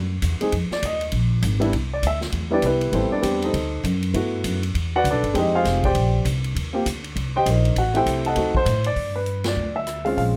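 Close, detailed and nearly dry, this swinging jazz piano trio fragment puts a dark, mellow upright piano up front for a solo through 9.0 seconds, backed by a woody pizzicato upright bass and a big-band drum kit with dark cymbals, a medium-tuned snare and a punchy kick, before the band strikes an accent at 9.4 seconds.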